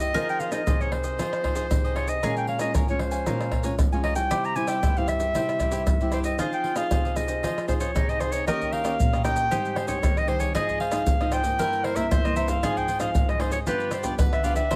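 Close, detailed microphones and light reverb frame this nostalgic yet lively samba and choro excerpt, where a bright, classical-style solo clarinet sits up front carrying the melody. Beneath it, a crisp picked cavaquinho and a small, warm fingerpicked nylon-string guitar supply the accompaniment, while a double-strung bowl-back mandolin traces a second line in the background from 0.1 seconds. Maracas, pandeiro, tamborim and a tight surdo, played with soft hands in a small-room sound, drive the groove up front, and the harmony moves to a new section at 8.5 seconds.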